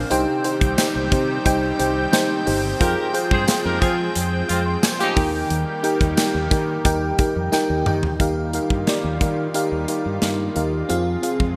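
Bright, glossy 1980s-style digital production with a moderate plate reverb frames this uplifting pop passage, cut from a longer piece. A dreamy FM electric piano with a soft pad layer sits up front, and a thick, detuned unison pad holds sustained chords, both carrying chorus and shimmer reverb. Alongside them are a direct fretless electric bass with subtle chorus, a polished studio drum kit with a punchy kick and gated reverb, and a very quiet, jingly tambourine. A smooth jazz-style horn section adds stabs from 2.8 to 5.3 seconds, and a drum fill at 7.5 seconds leads into the closing section, as the harmony moves from Cm, Fmadd9 and Eb to Ebadd9 and Fm.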